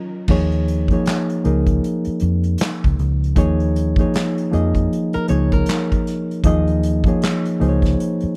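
A swung sixteenth-note groove at 78 BPM in 4/4 sets a late-night, introspective R&B and neo-soul mood in this short cut from a longer piece, opening on a band accent before settling over an Ebsus2 chord. A reedy, mellow electric piano sits up front with a punchy, round bass that is dark and foam-muted, while an acoustic kit played with bundle sticks brings kick, medium-tuned snare, hi-hat, handclaps and crash. A fingerpicked flamenco guitar with fresh strings adds a brief second line from 5.1 to 6.4 seconds, all captured as a dry, close 1970s-style studio recording in a small room.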